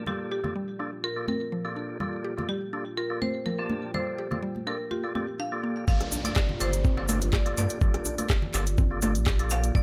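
A warm, hypnotic afro house groove in G minor at 124 BPM, this short piece cut from a longer track opens on a Gm7 chord with a bright, woody marimba struck with hard mallets carrying the melody through digital delay. Around it sit a dark, detuned analog pad in the background, swept by a filter and treated with chorus, phaser and sidechain pumping, plus clean, flute-like stabs from a percussive tonewheel organ with key click and a fast rotary speaker. A round, FM-based synth pluck with a mallet-like attack spins arpeggios with chorus and delay, while congas recorded in a small room supply the early pulse. The drop arrives at 5.9 seconds, bringing in a knocking electronic kick up front with studio reverb, a deep sine sub bass that pumps with the sidechain, a grainy tube shaker and a downlifter tucked into the background. From 6.0 seconds an afro-pop kit adds handclaps, smooth hi-hats and rim clicks, joined by a saturated, soft-handed djembe sitting low in the mix.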